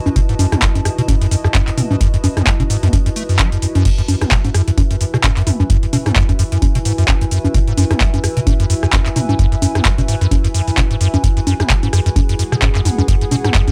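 Raw and hypnotic, this acid house excerpt rides a swung 4/4 groove over a single F#m7 chord, with a squelchy, resonant square-wave acid bass up front, its tube saturation and cassette grit pumping against a deep, tape-warm electronic kick that lands at 0.2 seconds. An electro analog drum machine fills out the pattern with metallic hats, handclaps, rim clicks, congas, cabasa, toms and crash, re-recorded in a small room. Behind them a dark, detuned sawtooth pad holds sustained chords and a warbling, nostalgic lo-fi pad adds mellow texture, both chorused and pumping, in a dry, gritty hardware sound.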